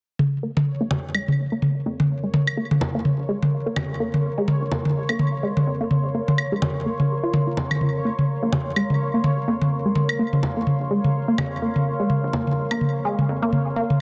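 This cool, sparse minimal techno excerpt opens at 0.2 seconds with up-front electronic toms, congas and claves, layered and touched with digital delay, riding a swung sixteenth-note feel. A juicy, squelchy blip pluck carries the riff under a filter sweep, with phaser and tape echo, while a bubbling stepped-filter texture, a rubbery square bass sitting in the background, and a deep, moody ambient pad arriving at 1.8 seconds fill out the space. The dense, heavily limited master keeps everything close under light reverb.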